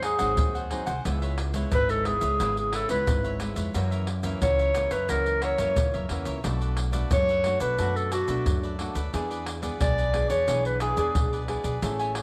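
Lightly reverberant studio ambience frames this joyful, lively samba-choro excerpt at 89 BPM in a straight 4/4, where a mellow, roomy clarinet sings the classical-style solo melody up front while a crisp, picked cavaquinho and a warm, fingerpicked nylon-string guitar comp through G#7, C#m7, F#7, Bm7 and E7 over a woody, dark pizzicato upright bass and an up-front pandeiro, egg shaker and tight surdo, with the clarinet dropping out at 11.4 seconds as the others carry on to 12.2 seconds.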